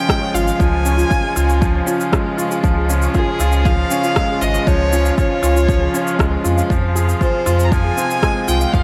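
A light reverb and digital ambience frame this intimate, cinematic excerpt of piano and strings electronica at 118 BPM in 4/4, moving from Db to Fm at 6.7 seconds. Up front, a clear concert grand piano plays a riff with delay, long sustain and audible action noise, while a single woody violin carries the melody, bowed sul tasto with vibrato. Behind them, a smooth string quartet holds sustained chords with sidechain pumping, and a very quiet, round pluck with chorus adds arpeggios. A deep, overdriven electronic kick and an overdriven rim click and shaker drive the beat, joined at 0.3 seconds by a warm sine sub bass that also pumps with the sidechain.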